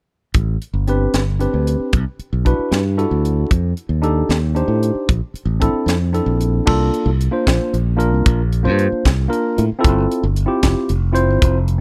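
A growly, fingered electric bass and a crisp, up-front fusion drum kit with bright cymbals, high-tuned snare and tight kick open this soaring, funky electric jazz fusion excerpt in a straight 6/8, joined at 0.9 s by a clean tine electric piano heard through its built-in speakers, supplying lush chords such as Am11 and Bbmaj9#11 before settling into suspended C13sus4 and G13sus4 harmony from 6.7 s, all captured in a dry, close 1970s-style studio with small room ambience.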